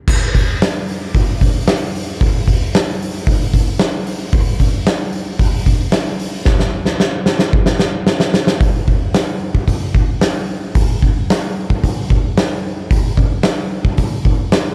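A straight 4/4 rock beat at 112 BPM drives this short, menacing cut from a longer piece, played on an oversized, low-tuned acoustic drum kit. The boomy kick and fat snare sit up front, with hi-hat and dark crash cymbals around them. A saturated, gritty edge gives the kit a raw bite, while a big, pumping room and light reverb make it sound heavy and imposing. A drum fill from 6.5 seconds leads into a new section at 8.6 seconds, which carries the groove on until the cut ends at 14.7 seconds.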